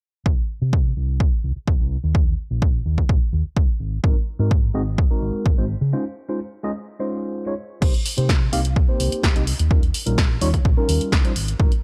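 Opening with a filter sweep, a dark, round fingered electric bass with tube saturation and sidechain pumping rides beside an up-front, tape-warm electronic kick drum in this sensual, funky filtered disco house excerpt, moving from a chordless opening through Eb5 and Ab7 chords. A mellow, clean tine electric piano with phaser and low-pass filtering joins at 4.0 seconds, carrying the harmony into Dbmaj7 around a break at 5.9 seconds. At 7.8 seconds a second filter sweep arrives as a punchy analog drum machine adds snare, hi-hat and pumping crash cymbal over Cm7 and Eb7, all captured in a dry, gritty hardware sound.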